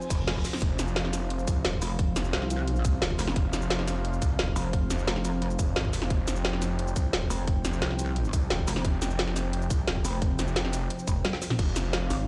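A heavy, pulsing pluck wobble bass sits up front, saturated and compressed, joined at 0.6 seconds by a thick detuned saw bass with overdrive and sidechain pumping, in this dark, futuristic slice of technical drum and bass at 175 BPM, cut from a longer piece that opens straight into a drop. A tight, layered electronic kick and a kit with a woody snare, metallic hats, shaker, crash and toms drive the groove, with a reverse cymbal in the background at 0.1 seconds and a drum fill at 11.2 seconds. Beneath it all a deep, moody analog pad holds slow-attack sustained chords on an F, the whole mix heard through a big sound system in a bare stone room.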